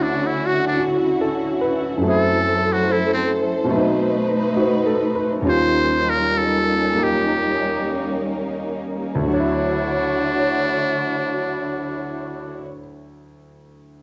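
Tender and late-night in mood, this swung jazz ballad excerpt is taken from a longer piece and lasts only fourteen seconds. A metal-muted trumpet carries the melody up front, buzzy, breathy and raspy, with vibrato, scooped notes and a growling, gritty jazz edge, and it stands out as the solo voice through the opening 5.4 seconds. Beneath it, a clear, natural grand piano with short sustain plays the accompaniment, while a symphonic string section holds lush, bowed chords with a soft attack and an expressive ensemble sound. The pace slows from 2.0 to 9.3 seconds as the harmony moves from Dmaj9 through F#m7b5, B7b9 and Eb7 before settling back on Dmaj9. The trumpet and strings drop away just before the end, leaving the piano to finish alone at 14.0 seconds. Cassette tape colours every part, and moderate spring reverb with small room ambience gives the whole excerpt an intimate home-recorded feel.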